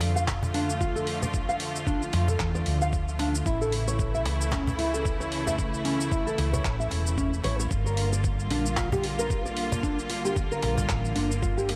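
Organic downtempo at 113 BPM in D harmonic minor with a swung 16th feel, this meditative, earthy excerpt cut from a longer piece moves through Dm, A and Gm7 as thumb-plucked nylon-string guitar arpeggios ring through tape echo over biting, bowed symphonic strings holding sustained chords with sidechain pumping, a dark, round fretless electric bass thickened by ensemble chorus, a dusty, gritty sampler-style kit of cabasa, handclaps and hi-hat, a woody cajon with faint snares in the background, and an overdriven, thumpy electronic kick entering at 0.3 seconds, all set in a small, lightly reverberant room.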